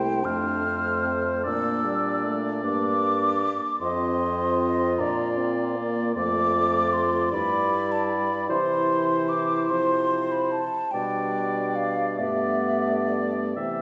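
Classical slow romantic movement for wind quintet, lyrical and tender, unfolding in a rubato 6/8 at around 40-52 BPM across a 13.8-second passage cut from a longer piece. An airy, hollow concert flute with soft-attacked vibrato carries the melody up to F6, joined by a warm oboe second line, while a clear clarinet and a present, vibrato-tinged French horn fill in the accompaniment above a smooth bassoon bass placed up front. The quintet sits further back in a wet scoring-stage reverb, and the harmony drifts from F through Bbmaj7 and Dm/F to C and G/B, settling on Gadd9.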